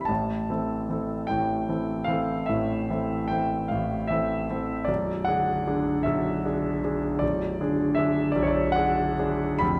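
Serene and nostalgic, this short passage cut from a longer piece is a romantic classical nocturne for solo piano in A minor. It moves in a rubato 12/8, with the dotted-quarter pulse drifting between 45 and 54 BPM. A clear concert grand piano plays alone from start to finish, spanning B0 to B5, its deep bass grounding a polished, present sound. The instrument is placed up front with an intimate feel, and the audible action noise adds a close, tactile quality. The harmony rests on A minor before shifting at 4.9 seconds to G#dim over B, all carried by a wet recital hall reverb with a 1.4-second decay.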